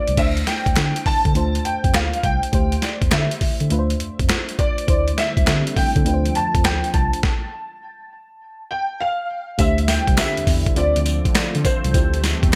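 New jack swing R&B in D minor at 102 BPM with a punchy, slick swing, where a dark, up-front concert grand piano carries the melody over a soft, round FM electric piano with chorus and phaser, a clean tine electric piano playing the bass line, a gritty, pitched-down boom bap kit with a thumpy kick, high-tuned snare, tambourine and gated reverb, and a very quiet, hollow group handclap, while an evolving, detuned sawtooth pad enters in the background at 4.9 seconds before the band breaks into a stop from 7.2 to 9.6 seconds, all wrapped in bright 1980s-style digital production.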